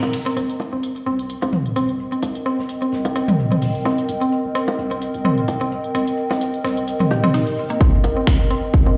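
A lush hall reverb and the boom of a big sound system in a bare room surround this hypnotic, clinical minimal techno excerpt, swung on the sixteenths over a single Cm7 chord. Up front sit a woody, round mallet-like synth pluck with chorus, tape echo and sidechain pumping, alongside electronic bongos and toms. Around them hovers a warbling, lo-fi tape-like pad of detuned square and triangle waves, joined by crisp hats and finger snaps from a house drum kit, a tight funk kit's high-tuned snare and shaker in the background, and a deep, pitch-dropping sine sub bass entering at 0.4 seconds. A filter sweep runs over the synth arpeggio sound, and at 7.8 seconds a punchy, layered electronic kick arrives up front as a build-up runs to 9.0 seconds.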